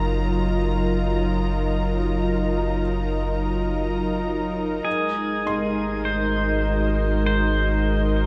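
Reflective and serene, this slow ambient excerpt at 50 BPM rests on a detuned, warbling sawtooth pad with chorus and shimmer reverb holding an Ebmadd9/Gb chord, a round sine sub bass up front, and a very quiet felt-muted upright piano whose mellow arpeggios carry audible action noise, while a veiled con sordino violin section lends a lush bowed shimmer until 4.9 s; a clean, fingerpicked pedal steel guitar enters at 4.8 s with slide, volume swells, shimmer reverb and analog delay as the harmony moves to Ab7, all inside an echo-heavy mix with plate reverb.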